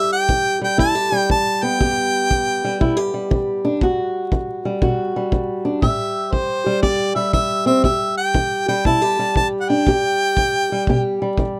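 A moderate booth ambience and a layer of vinyl crackle frame this brief acoustic country blues cut from a longer piece, brooding and smoky in E minor at 119 BPM with a swung 4/4 feel. Up front, a fingerpicked ladder-braced acoustic guitar on old strings gives a dark, woody, boxy accompaniment from the opening moment to 11.6 seconds, moving from A5 to Emadd9, then Am7 and back to Em. A clear harmonica carries the melody as the soloist, sitting up front with light vibrato, scooped notes and a jazz-tinged phrasing between C5 and A5. A natural, punchy kick drum played with brushes enters at 0.3 seconds, set a little further back in a small-room sound. The whole passage unfolds as a single section, giving the impression of a short, intimate performance.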